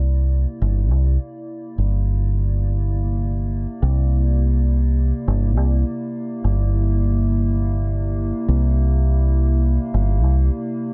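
A straight, unhurried 4/4 pulse carries this short, hazy and peaceful stretch of ambient dub, built on a single C9 chord. A deep, round fingered electric bass sits up front, dark and direct, holding the low end until 10.5 seconds, while a warbling, lo-fi pad with a nostalgic, tape-like haze fades in beneath it, its slow-attack sustained chords softened by chorus and its own reverb. The overall sound stays dry and close, with the pad set well behind the bass.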